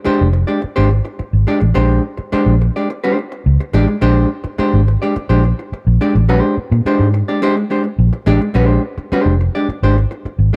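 A straight 4/4 groove at 106 BPM drives this playful, funky clip, cut from a longer piece and resting in Bb mixolydian on a single Bb13 chord throughout. A vintage muted fingered electric bass anchors the low end from 0.1 seconds, moving between F1 and Bb2 with a round, foam-muted, amped tone that sits up front and louder than its partner. A vintage hollow-body jazz guitar supplies the accompaniment from the very start at 0.0 seconds, its clean, picked sound staying dark and close while ranging from Ab3 to D5. Both parts carry on together through one continuous section, the bass dropping out at 10.5 seconds just before the guitar finishes as the clip ends at 10.6 seconds. A digital ambience surrounds the pair, giving the sparse duo a polished sense of space.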